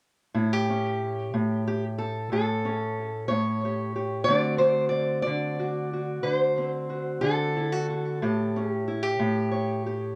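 A dark, boxy sound sits in a moderate studio room, with a lone fingerpicked steel-string parlour guitar placed up front and touched by tape echo. This short, laid-back acoustic country blues fragment moves in a slow 12/8 at 61 beats per minute in A mixolydian, with a gritty edge. The guitar plays from 0.3 to 10.2 seconds, moving from A7 to D7 at 4.3 seconds and back to A7 at 8.2 seconds.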